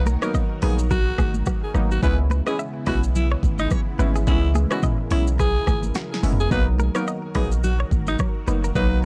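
Breezy and joyful, this afrobeats passage, cut from a longer piece, moves at 107 BPM in B major with a 16th-note swing, shifting from Bmaj7 to C#m7 and back to Bmaj7 at 6.5 seconds. A raspy, gritty alto saxophone carries the melody with light vibrato and scooped notes, close-miked and touched with delay, while a glassy, crystalline wavetable pluck with chorus and a filter sweep fills in the accompaniment. A lush, detuned unison pad holds sustained chords in the background under chorus and phaser, and a punchy sine sub bass with a pitch-drop attack sits up front. A clean, twangy electric guitar recorded direct plays a picked riff with delay, and a tape-warm deep house drum kit with a deep kick, punchy snare and warm hats drives the groove alongside high-tuned, damped congas played with soft hands. A drum fill arrives between 6.0 and 6.5 seconds, and the dark, warm production keeps the sound dry.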